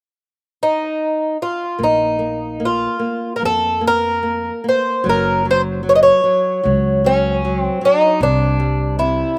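Passionate and longing, this rubato fado-style ballad in Bb harmonic minor at 75 BPM opens with a boxy, shimmering, octave-doubled fingerpicked twelve-string acoustic guitar carrying the melody up front from 0.6 s, before a fingerpicked flamenco guitar with audible finger squeak and a woody, growly pizzicato upright bass join at 1.8 s over Bb5, Gb5 and C chords, both guitars touched by slapback echo in a dry, open-air sound.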